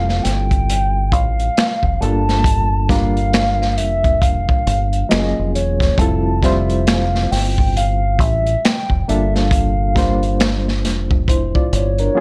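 Light reverb frames this smooth, relaxed neo-soul R&B passage, cut from a longer piece and moving through Fmaj9, Gm9 and Gbmaj9 chords with a swung sixteenth-note feel. A hollow, woody clarinet-like synth lead carries the melody with chorus, vibrato and plate reverb, while a barky, reedy electric piano with light overdrive, tremolo and plate reverb plays the accompaniment. Underneath, a deep, round fingered electric bass and a crunchy, gritty breakbeat kit of tight kick, snare, hi-hat and finger snaps sit up front.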